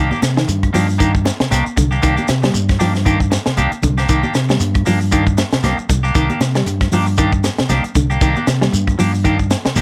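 The tight, up-front funk drum kit, with its high-tuned snare and tight kick, drives this intense afrobeat excerpt at 116 BPM in C minor, with swung sixteenths over a single Cm9 chord, while a dark, round fingered bass, a warm clean guitar playing arpeggios, a bright clean guitar playing stabs with subtle chorus, soft ringing congas in the background, a grainy shekere and very quiet woody claves fill out the groove in light reverb.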